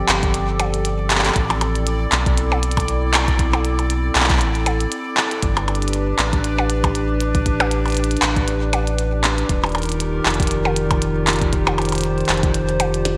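A swung sixteenth-note groove in four drives this playful, glitchy IDM fragment, cut from a longer piece, with a glitchy electronic kit of tiny snare, clicky hats, handclaps and percussion blips sitting up front in studio and gated reverb. A deep electronic kick anchors the beat from 0.2 s. Beneath it, a round, dark analog bass blends sawtooth and sine tones with a fast attack and sustained notes low in the register. A warbling, lo-fi tape-like pad holds nostalgic sustained chords, moving through Fadd9, Am, G and Ebadd9, colored by chorus, its own reverb and a gritty vintage 12-bit sampler character. In the background, a resonant, bubbling sawtooth texture hovers on a single high note, its filter stepping at random through chorus and reverb. The whole mix carries a bright 1980s-style digital sheen within a moderate plate reverb ambience.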